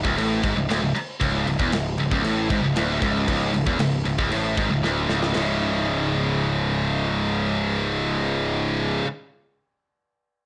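A straight, driving 4/4 pulse anchors this dark, aggressive heavy metal fragment, cut from a longer piece and set on a single minor chord. A tight acoustic drum kit pushes it along with a tight kick, a medium-tuned snare carrying a touch of soft clipping, and crashing bright cymbals, rolling into a fill at 4.8 seconds before dropping out at 5.5 seconds. Three picked, distorted guitars hammer out the riff together: a heavy high-gain one sits up front, a double-tracked distorted guitar reaching higher into its range lies behind it, and a scooped high-gain guitar fills the background. Underneath, a picked electric bass, taken direct and through an amp, growls with fuzzy overdrive in the low register. The mix is blown-out and overdriven, wrapped in a moderate studio reverb, and the guitars and bass carry on alone after the drums stop.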